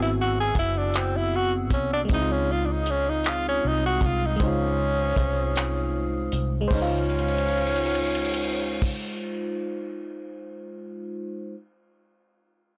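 A breathy tenor saxophone with subtone and scooped notes carries the melody over glassy, chorused FM electric piano, a clear woodwind section holding sustained chords in the background and a round, foam-muted fingered electric bass with transformer saturation, before a dark, dry soul drum kit of kick, hi-hat, ride, crash and handclaps enters at 0.6 s in this sensual, intimate slow six-eight R&B fragment at 52 BPM in Db major, moving from Ab7alt to Dbmaj9, with a break at 5.6 s, a drum fill at 7.1 s, a blown-out, overdriven sound bathed in studio reverb, and the electric piano lingering last.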